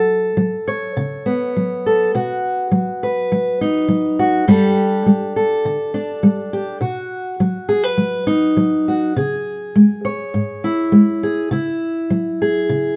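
Haunting and wistful, this 13-second excerpt of solo folk fingerstyle features a fingerpicked steel-string acoustic guitar with warm tone and fresh strings, sitting up front in a live room with light reverb, moving at 102 BPM in a straight 4/4 through F#m, B, Gsus2, C#m and a closing F#5/C#.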